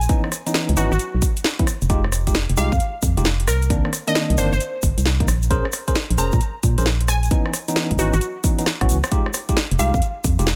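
A hollow, organ-like FM bass with sidechain pumping drives this skippy, bouncy two-step UK garage excerpt in F minor at 133 BPM, alongside a punchy, tape-warm electronic kick, a house drum kit with cracking snare and metallic hats that takes a fill at 8.7 seconds, a grainy egg shaker in the background, worn, slightly out-of-tune electric piano stabs with light overdrive and dub echo moving through minor-ninth chords, and a glassy, crystalline wavetable pluck melody with chorus and dub echo, all set in digital ambience.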